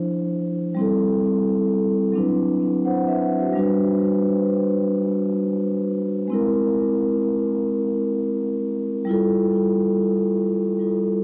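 This hip hop excerpt carries a reflective, hazy mood, built on a 4/4 groove with a swung sixteenth-note feel. A lone vibraphone played with soft mallets and its motor off carries the whole 11.2 seconds, ranging from F3 to F#5 with a mellow, ringing, metallic tone that sits close-miked, dry and up front. Its sound is shaded by a low-pass filter, cassette tape colouring and tape echo, giving the instrument a softened, full character. The harmony drifts from Dm9 through Am7, D13 and Gmaj7 to Caug7, settling on Fmaj9 at 9.1 seconds. Light reverb and the grain of a home cassette recording, complete with lossy compression artefacts, add to the dusty, intimate atmosphere.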